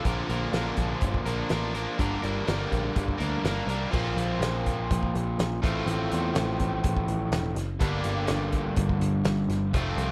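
A cool, bittersweet mood runs through this short indie rock cut, taken from a longer piece and moving in a straight 4/4 feel. Up front, a bright, overdriven semi-hollow guitar plays a picked, double-tracked riff that carries the hollow-body ring of the instrument, drifting from Bb to G minor and then through a Bbsus2 and F/A before settling back on G minor. Beneath it, a loose acoustic drum kit fills a pumping studio room with a fat snare, a punchy kick, hi-hat, and dark crash cymbals. An overdriven picked electric bass enters at 0.1 seconds, its tone dark, round and foam-muted, recorded direct. The mix stays dry with little reverb, and the riff section plays twice, restarting at 3.9 seconds.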